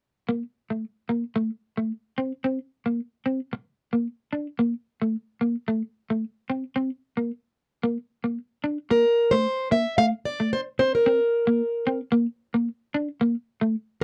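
A straight 4/4 pulse at 112 BPM carries this carefree, warm highlife excerpt. A clean, bright electric guitar, picked and up front with a lush chorus, opens the accompaniment at 0.3 seconds. It moves through Am, Bbsus2 and Bb, with brief unharmonized gaps between passes. At 8.9 seconds the harmony shifts to C7 and Amadd11. There, a picked, plugged-in steel-string acoustic guitar with fresh strings and a parlour character steps forward to carry the melody in a higher register, sitting a little louder than the electric part. Light reverb colours a dry, close sound in the manner of a 1970s studio, and the electric guitar drops out at 13.7 seconds, just before the acoustic line ends.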